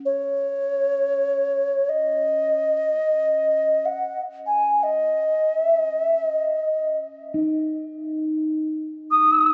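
Meditative and spacious, this free-time world meditation music is a brief excerpt cut from a longer piece. A hollow alto ocarina carries the melody up front with a clay-like, airy tone, soft attack and gentle vibrato, bathed in plate reverb and a diffuse ambient delay, while a bronze singing bowl, struck with a suede striker, sits quietly beneath as a ringing, metallic texture with slow beating. The production is dark and warm, set in a wet studio reverb.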